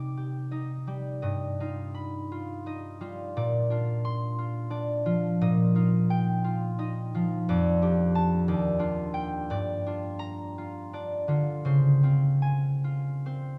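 Flowing in a rubato 6/8, the pulse drifts between 46 and 62 BPM in dotted quarters, giving this gentle, wistful classical piece for solo concert harp an unhurried, breathing feel. The harp plays alone throughout the 13.6-second passage, which is cut from a longer work. It spans Eb2 to D6, its fingerpicked strings ringing out with an acoustic, up-front presence. The harmony moves from Cmadd9 through Gaug7, Bbadd9, F69 and Ebmaj9 before settling on Dbmaj7. A wet recital hall reverb with a 1.6-second decay surrounds the instrument, and the tuning sits slightly below standard at A4 = 439 Hz.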